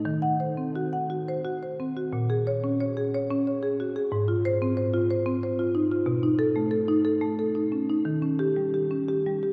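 A cathedral-like reverb with a long, lingering tail surrounds this recording, which sounds as though it was captured in a church or concert hall. A solo marimba played with medium mallets sits up front within that resonant space, its padauk bars giving a woody, dark and smooth tone. This contemporary classical piece moves in a flowing triple metre with a rubato feel, and its mood is reflective. The marimba ranges from Ab2 up to Gb5, and its harmony drifts through Ebm6, Bbm7, Ab6, B7 and Eb7, with a new section opening at 2.1 seconds. The recording is a short 9.5-second passage cut from a longer work.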